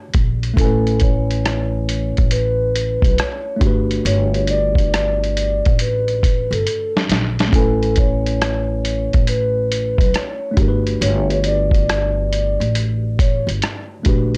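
A muffled, pitched-down sampler drum kit leads this dreamy, mellow lo-fi hip hop excerpt at 69 BPM with a swung 16th feel. Its thumpy kick, medium-tuned snare, rim click and hi-hat carry 12-bit grit and a large-room character, with a short fill at 6.7 seconds. A woody pizzicato upright bass with transformer saturation sits up front, and a worn, slightly out-of-tune tine electric piano, softened by a low-pass filter, moves between Gmaj9 and Amaj9 chords. From 0.6 seconds a soft-mallet vibraphone carries the melody with a ringing, metallic tone and slow motor vibrato, all within a dry, gritty recording.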